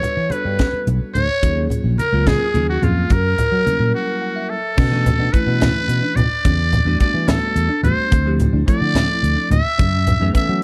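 A buzzy, raspy trumpet with a metal mute leads this slick, intense stretch of electric jazz fusion, sitting up front with a light vibrato as it carries the melody from start to finish. Alongside it, a hollow, pure-toned concert flute plays a second line with vibrato until 4.5 seconds, while a bell-like tine electric piano with analog chorus supplies the accompaniment and steps forward with a fill during a break from 3.9 to 4.8 seconds. The groove moves in 6/8 at 72 BPM, driven by a crisp, airy fusion kit with a high-tuned snare and punchy kick, thick-skinned low-tuned congas played with soft hands, and a growly, sustaining fretless bass. From 4.8 seconds the harmony settles into B minor, and a mellow, dark electric guitar with lush chorus adds quiet stabs in the background. Rich minor eleventh chords colour the progression, and the production is dark with light reverb, in a passage cut from a longer piece.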